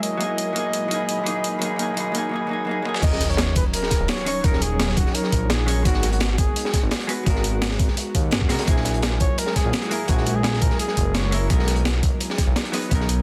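A dense, heavily limited mix with light reverb carries this melancholic, rolling liquid drum and bass cut at 170 BPM, where a mellow, close-miked flugelhorn sings a jazz-style solo line with light vibrato and scooped notes through digital delay over a dark, clean hollow-body jazz guitar with tape echo. An ethereal, airy pad sits in the background with ensemble chorus and sidechain pumping, while a smooth sawtooth-and-square synth bass with a moving notch anchors chords that travel from Bmaj7 through D#m7, G#m9 and F#9/A# back to Bmaj7. A gritty, compressed sampler-style breakbeat with a high-tuned snare drives the build-up into a drum fill at 2.9 seconds, and at the drop at 3.0 seconds a thumpy electronic kick, a crunchy, saturated second breakbeat kit in the background and a brief electronic sub drop join in.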